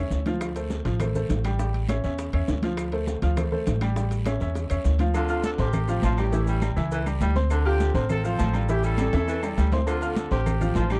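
A fiery, driving salsa groove in straight 4/4 at 203 BPM pushes through this D minor excerpt. Ringing congas, raspy guiro, grainy vintage maracas, metal-shell timbales with agogo bells and woody claves sit in the background, very quiet, tight, high-tuned bongos and cowbell join in, and drum fills land near 0.0, 4.3 and 9.0 seconds. A thumpy, gut-strung pizzicato upright bass sits up front and a clear, short-sustained grand piano accompanies throughout over a Dm7 to A7 vamp. At 5.2 seconds a tight horn section with light vibrato takes the melody, joined by a breathy, whispered baritone saxophone on a second line, all in a dark production with light reverb.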